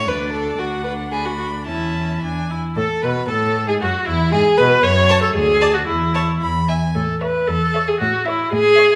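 Cheerful and graceful, this quick classical-period string quartet movement in A major moves at 114 BPM in a rubato 2/4, with a first violin carrying the melody in rich, focused bowed tone with vibrato over a second violin line colored by expressive portamento, a clear viola accompaniment that stands as the most prominent voice, and an up-front cello bass, all set in a moderate recital hall reverb as the passage, cut from a longer piece, moves into its second section at 2.8 seconds.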